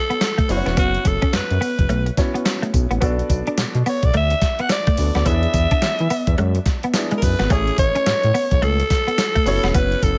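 A swung 16th-note groove at 107 BPM drives this slick, punchy new jack swing R&B piece in B dorian, built on a gated 80s drum machine with a thumpy kick, gated-reverb snare, hi-hat and tambourine carrying 12-bit sampler grit, plus a smooth sawtooth-and-triangle synth bass with ring modulation and vibrato up front from 0.5 seconds. A breathy, raspy alto saxophone leads the melody with scooped notes and vibrato, while a present grand piano comps through F#7sus4, Bm7, E7 and Amaj7. A clean, compressed electric guitar riff with ensemble chorus joins in, and a close, dry, metallic cowbell sits in the background of this section of a longer track.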